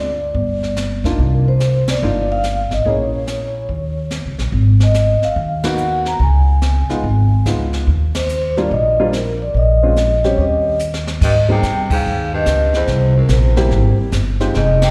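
A soft-mallet vibraphone carries the melody over woody pizzicato upright bass from the start, its ringing metallic tone shaded by fast motor vibrato, plate reverb and slapback echo. A brushed jazz kit with a high-tuned snare and boomy kick joins at 0.3 s, and a dark, intimate baby grand with audible action noise comps from 1.1 s, as this swinging, sophisticated small-group piece moves at 144 BPM in Eb major with band accents. After a drum fill, the key shifts to Ab major at 11.2 s, where a distant, subtoned baritone saxophone adds a mellow second line, all heard as a live gig through the venue's PA with recital hall reverb and cut from a longer piece.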